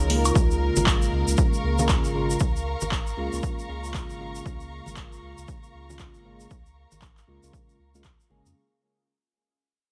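A swung groove drives this smooth, late-night deep house clip, with a punchy, up-front electronic kick, a tape-warm analog drum machine supplying handclaps, hi-hat and woodblock, bright dry congas sitting in the background and a grainy tube shaker. Underneath, a round sine sub bass with tube saturation pumps against the kick, while a glossy, retro chorused polysynth plays sustained stabs on a Bbm7 chord, its evolving pulse-width tone carrying filter sweeps and dub echo. A lush, woody studio string section adds a bowed vibrato texture, all set in light reverb and digital ambience as the piece fades out across its 8.6 seconds.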